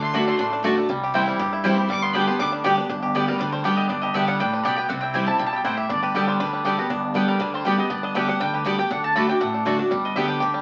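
A straight 4/4 pulse at 239 BPM drives this joyful, lively bluegrass excerpt in G major, where a clear, smooth-topped fiddle with light vibrato sings a short opening solo until 2.5 seconds over a twangy, up-front fingerpicked banjo melody and a full-bodied dreadnought guitar, while a woody double-strung mandolin adds stabs throughout, a second mandolin takes up the melody from 3.3 seconds, and a growly, thumpy upright bass sits in the background, all heard through wet studio reverb and the crackle of a very old 78 rpm record.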